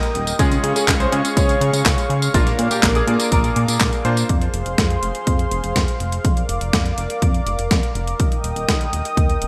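A punchy, tape-toned electronic kick drives this sunny, playful italo disco excerpt at 123 BPM in a straight 4/4. An overdriven, sampler-style 12-bit drum machine sits up front with handclaps, hi-hat, tambourine and a medium-tuned snare, while a glossy, chorused synth bass with filter sweeps and a smooth, detuned analog pad carry the harmony through Db, Bb, Fm, Bb/F and Eb. In the background, a clear concert grand piano plays a short-sustained melody and a vintage, clangy electric grand adds stabs, both with digital delay, until about 4.3 s, all set in a bright 1980s-style digital production with light reverb.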